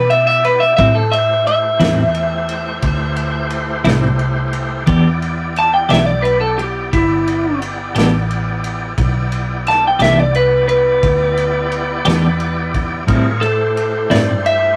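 An electric slide guitar leads this fragment of a longer slow blues, soloing across the whole passage with a slightly broken-up, fingerpicked voice that sits up front. Beneath it, a thick, overdriven tonewheel organ holds sustained chords through a slow rotary speaker and chorus vibrato, its key click audible, while a round, foam-muted vintage electric bass anchors the low end. A crunchy breakbeat drum kit of kick, ride and snare joins at 0.1 seconds, saturated and gritty with dark cymbals and a rolled-off top. A clean, picked electric guitar with tremolo enters at 0.8 seconds as accompaniment. The music moves at 58 beats per minute in a straight 12/8 feel in E minor, shifting between Em7 and Am7. The mood is brooding and mournful, and the rough rehearsal-room recording carries a short, wet booth ambience.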